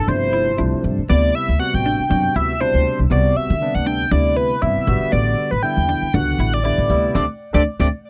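A screaming, overdriven synth lead opens this slick, bright jazz excerpt at 0.0 seconds, its gritty, guitar-like sawtooth and pulse-wave tone carrying the melody with distortion, a phaser and vibrato, sitting up front. A clean, compressed electric guitar enters at the same moment with darker stabs tucked in the background under a lush chorus, and a barky tine electric piano, played through a combo amp with analog chorus, joins the accompaniment almost immediately. Anchoring it all is a woody, growly upright bass played pizzicato, thumpy and up front, outlining the low end. The tune swings at 119 BPM in 4/4 in D mixolydian, tuned slightly sharp to A4 = 441 Hz, moving through suspended chords from G13sus4 to D13sus4, then A13sus4 and back to D13sus4. The band hits an accent together at 7.2 seconds just before the cut, all captured in a dry, close, 1970s-style studio sound with little reverb.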